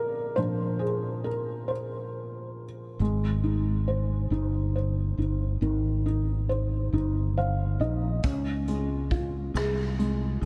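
A felt-muted upright piano opens alone, intimate and thickly padded, on a Bbadd9 chord in this swaying, romantic six-eight pop ballad at 46 BPM. At 3.0 seconds a round, dark mellow fretless electric bass enters with an ensemble chorus as the harmony moves to Ab, and the piano adds a fill before a vintage brush drum kit arrives at 8.2 seconds with a tight kick, hi-hat and rim click under a Dbmaj7. The dreamy mix is soaked in a huge ambient reverb, carries lossy compression artefacts and a faint mains hum, and the excerpt is cut from a longer piece.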